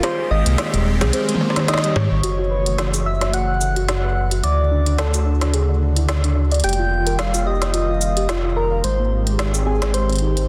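A round, keys-like FM lead, a swirling phased pad, a ringing harp-like pluck and an organic electronic drum kit all open this glitchy, playful IDM piece cut from a longer work, with a swung sixteenth-note feel. The drums mix bongos, crisp hats, shaker, toms and a woody snare, with a produced character re-recorded in a large room. A dark, rumbling detuned saw bass arrives at 0.3 seconds and sits up front, its beating tone adding weight beneath the lighter parts. The lead carries a gentle melody through chorus and digital delay. The soft pluck spins arpeggios through tape echo, and the pad holds sustained chords whose filter begins sweeping at 2.2 seconds. Light reverb and a dense, heavily limited modern master keep the seventh-chord harmony close and full.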